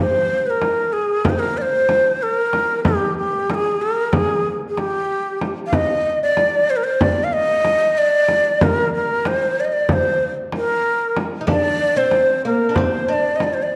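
A breathy, bright ney carries the melody up front, its reedy, end-blown tone shaded with vibrato and soft attacks, in a hypnotic, melancholic Turkish makam piece in G makam kurdi at 188 BPM in 9/8. A close, dry frame drum keeps time from 0.6 seconds, while a woody, plectrum-plucked fretless oud with doubled strings adds a brief second line from 11.4 seconds. The dark production sits in the long reverb of a recital hall, and this short passage is cut from a longer piece.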